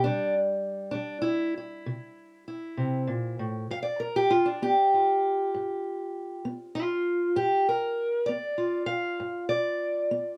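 In a slow 12/8 at 66 dotted-quarter beats per minute, this laid-back, soulful acoustic country blues fragment in G mixolydian is carried entirely by a fingerpicked steel-string acoustic guitar. The parlour-style guitar sits up front with a dark, boxy tone and light reverb, ranging from G2 to F5 as it moves from a C chord to G7 at 3.7 seconds. Lifted from a longer piece, it runs 10.4 seconds.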